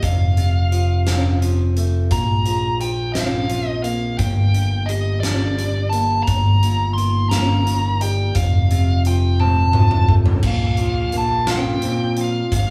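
In a slow, straight 6/8 at 58 BPM, this cinematic, euphoric post-rock passage cut from a longer piece pairs a huge arena drum kit, with a fat snare and punchy up-front kick, and a growling, bright, overdriven fingered bass beneath lo-fi, slightly broken-up picked arpeggios from an electric guitar through a small old amp, while a dark, smooth lead guitar with overdrive and digital delay carries the melody over F, Bbsus2, Gm and Eb/G in a lightly reverberant small-room live sound, before a drum fill at 9.4 seconds leads into a new section at 10.4 seconds.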